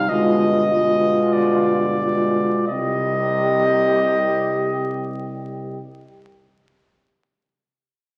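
Solemn and yearning, this slow, rubato hymn-like excerpt for brass band in C minor, around 42-53 BPM, sets a warm flugelhorn melody up front over a mellow French horn section with light vibrato on the second line, a vibrato-tinged euphonium and a smooth trombone in the background as accompaniment, and a dark, soft-attacked tuba bass entering at 0.1 seconds, slowing through its opening before a G7b9 chord resolves to C minor at 2.7 seconds, all heard through a recital-hall reverb and the crackle of a very old 78 rpm record.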